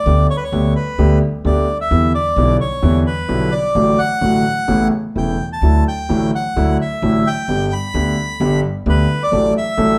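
Heard from further back in a club with a wet reverb, this nostalgic, passionate tango is cut from a longer piece and moves at 130 BPM in 4/4 with a rubato feel in D major. A reedy, dark bandoneon carries the melody up front, while a vintage concert grand piano with audible action noise and deep bass accompanies through chords such as Em7 and Aadd9. Beneath them, a woody, growly upright bass with steel strings plays pizzicato, adding a thumpy weight.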